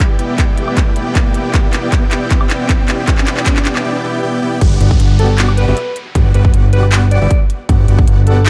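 Swung half-time sixteenths drive this euphoric, playful future bass clip, where a huge, sidechain-pumped supersaw riff with digital delay, a punchy, tape-toned electronic kick and a crisp trap kit of hats, handclaps, woodblock and crash carry a drum-filled build-up beneath a background riser and downlifter, until the drop at 4.6 s brings in a fat, saturated analog bass and, at 5.2 s, a raspy, growling alto saxophone solo with vibrato and delay, set in a dark production with light reverb.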